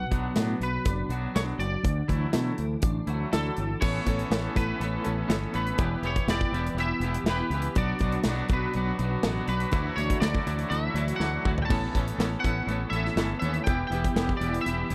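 A twangy lead guitar carries the melody through analog chorus and tape echo over a compressed twelve-string riff shimmering with ensemble chorus and a growling, overdriven fingered bass, opening this carefree, jangly indie rock excerpt in D major at 122 BPM. A second clean guitar adds a tremolo-treated riff, while an up-front rock kit with punchy kick and bright cymbals drives the straight 4/4 feel, adding a drum fill at 11.2 seconds. The chords cycle through Bm, Dadd9, Aadd9 and Em in a dry, close 1970s-style studio sound with a touch of reverb.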